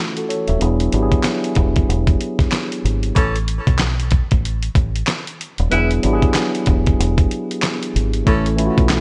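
A swung sixteenth-note groove in 4/4 drives this nostalgic boom-bap hip-hop clip, cut from a longer piece, with a dusty sampler-style kit of thumpy kick, fat snare, hi-hat and handclaps that sits up front with compressed, gritty 12-bit character. A mellow tine electric piano opens the clip as clean, direct accompaniment, its tone shaded by cassette tape coloring and filtering. A deep dub fingered electric bass joins at 0.5 seconds, dark, round and punchy, its foam-muted notes sitting low and up front. At 3.2 seconds a tight jazz-style saxophone section arrives with warm stabs, filtered and touched by delay, playing until 8.5 seconds. The sound is dry and close, giving the whole groove an intimate, lo-fi soul feel.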